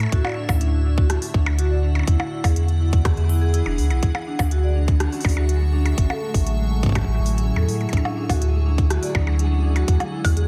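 A tight, up-front electronic kick drives a straight 4/4 pulse at 123 BPM alongside a glitchy kit of clicky hi-hats, percussion blips and rim clicks smeared with dub echo, in this wistful IDM excerpt in D lydian. A round, deep analog bass with tube saturation sits forward beneath an icy, crystalline pad of sustained chords moving between Dmaj7, E7 and A, while a metallic, ringing vibraphone with medium hard mallets spins arpeggios through tape echo. At 5.1 s a flickering, grainy texture slips in far in the background, adding to an echo-heavy mix bathed in light digital ambience.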